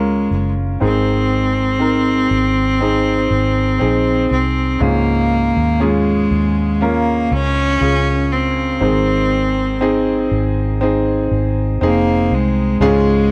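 A bright, nasal cello carries the tender melody with light vibrato and a tape echo over a clear concert grand piano with long sustain and a round, foam-muted electric bass in this emotional pop ballad excerpt, all close and dry in a 1970s-style studio sound.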